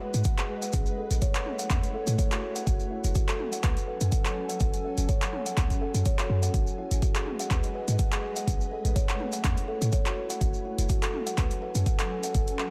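A woody, hollow-toned kalimba carries this afro house excerpt, its close-miked, ringing arpeggios passing through a low-pass filter with delay and a filter sweep that runs the full 12.7 seconds, while sidechain pumping makes it breathe with the beat. Beneath it, an ethereal, airy pad built from detuned, wave-folded sawtooth and triangle tones holds slow-attack chords with ensemble chorus, its own reverb and a pumping sidechain of its own. The chords cycle through G#m7, A and F#m in F# minor at 124 BPM, with a gentle 16th-note swing giving the groove its hypnotic, spiritual pull. A deep, boomy 808-style bass with a sine core and a noise layer sits high in the mix alongside an up-front, tape-warm electronic kick. An overdriven, layered deep house kit of handclaps, hi-hat and toms and grainy, compressed maracas fill out the rhythm, with a small room reverb on the kit and kick and a digital ambience around the whole track.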